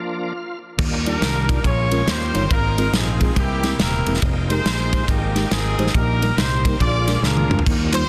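A shouting, lightly overdriven tonewheel organ with key click and slow rotary speaker holds a chord alone before the full band enters at 0.8 seconds, launching a reverent, soulful uptempo gospel excerpt in Eb major at 140 BPM with a swung 4/4 feel: a mellow tine electric piano comps in the background, a punchy fingered electric bass anchors the low end, an airy, up-front country drum kit drives with a medium-tuned snare, ride and crash before a short fill, a clear, tight horn section with light vibrato carries the melody from a distant, roomy position over rich jazz-tinged chords, and a crisp group handclap lands at 7.9 seconds, all in a dense, heavily limited modern mix with light small-room reverb.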